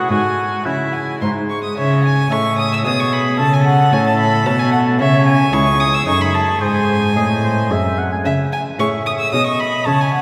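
A solemn, grave baroque-style sonata movement in C# minor at 111 BPM in 3/4 begins with all four parts together: a warm oboe with light vibrato carries the melody, a rich violin with light vibrato plays a higher second line, a mellow fingerpicked lute with double gut strings gives delicate accompaniment, and a close, reedy cello holds the bass. The bowed violin and cello sit up front with a period-style gut-string tone, all set in a wet church reverb. The harmony moves from C#m through Amaj13 and D#dim/F# to G# before settling on C#m at 8.3 seconds in this passage cut from a longer piece.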